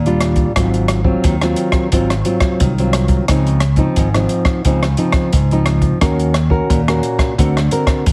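Heavily compressed with a radio-like sound and light reverb, this lively, nostalgic samba and choro excerpt at 88 BPM in 4/4 features an up-front, thumb-plucked classical nylon-string guitar moving through Ebmaj9, Ab6, Dbmaj9, Ebm7 and D7b13, supported by a direct, amped fingered electric bass and a dark, small-room jazz drum kit with a boomy kick, rim clicks and hi-hat under a rolled-off top.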